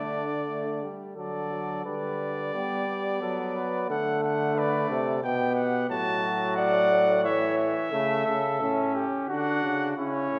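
Heard in a reverberant scoring-stage space, this short cut from a longer classical brass canzona in triple metre is contemplative yet driving, with four imitative voices sounding together from start to finish. An up-front trumpet with light vibrato and a smooth top carries the melody over a mellow, distant flugelhorn second line and a brilliant, vintage-toned trombone accompaniment. A roomy euphonium with vibrato anchors the bass as the harmony settles from a suspended opening onto D, passes through G and A colours, and lands back on D at 9.3 seconds.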